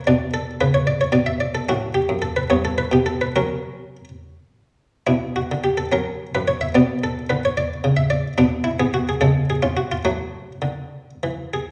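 Solemn and flowing, this excerpt from a baroque-style suite movement in a rubato 6/8 around 67-76 BPM features a solo buff-stop harpsichord, its muted, lute-like plucked tone sitting up front in a reverberant recital hall as the music moves from B minor toward F# minor at 8.4 seconds.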